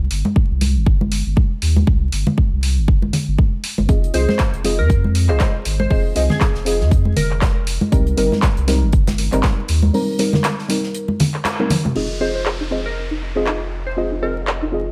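A punchy, up-front electronic kick and a round sine sub bass with sidechain pumping drive this hypnotic deep house excerpt, joined by a layered house kit with bright hats, claps and toms, close, dry congas, and an airy, polished acoustic kit, while a dark, nasal chord stab with chorus and tape echo enters at 3.9 s, a crystalline, warbling wavetable pluck with delay floats above, and after a break at 9.9 s a gentle, very quiet arpeggiated pluck and an electronic downlifter arrive at 12.0 s over vinyl crackle.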